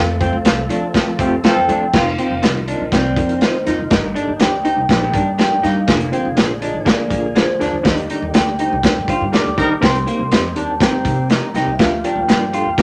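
A moderate club reverb surrounds this uplifting, danceable excerpt of uptempo 1960s-style soul at 122 BPM in F mixolydian, where a mellow, ringing vibraphone carries the melody over a gritty, overdriven reed electric piano with fast tremolo, a very quiet tonewheel organ holding percussive chords through a slow rotary speaker, a woody, thumpy upright bass, a saturated breakbeat kit sitting up front, two lo-fi, slightly broken-up electric guitars playing a fingered riff and picked stabs, and a loose vintage horn section adding a second line in brief bursts, with a band accent from 7.8 to 9.8 s.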